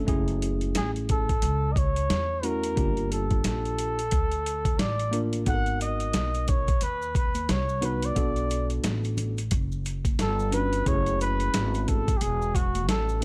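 Cool and mellow, this jazz-hop cut at 89 BPM with a swung 16th-note feel rides a gritty, compressed, pitched-down boom bap drum kit with a thumpy kick and a woody, dark pizzicato upright bass, both up front, under a worn, slightly out-of-tune tine electric piano, while a breathy, veiled bucket-muted trumpet with light vibrato and scooped notes carries the melody from 0.8 seconds, and very quiet maracas and congas join at 5.5 seconds over chords moving from F#m9 through Gm9, G#m9 and Bm7 back to F#m9.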